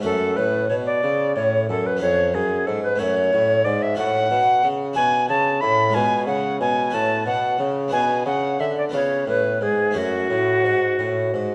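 A mellow alto recorder carries the melody up front, its pure, woody tone softly attacked and shaded with expressive vibrato, rising as high as B5 over the 11.5 seconds of this flowing, serene baroque-style sonata movement with continuo. Beneath it, a clear bassoon sits close to the listener on the bass line, its light vibrato and gentle attack giving the low part a singing, classical character. A harpsichord fills in the accompaniment with an airy, plucked Flemish sound, full-bodied from its two sets of strings. The music moves at 61 beats per minute in a straight 6/8, settling into F# minor from 4.0 s and passing through chords such as Bm, G#dim/B and C#7 before returning home to F#m at 10.0 s. A wet recital-hall reverb and dark production wrap the trio in a soft, resonant glow, and the passage is cut from a longer piece.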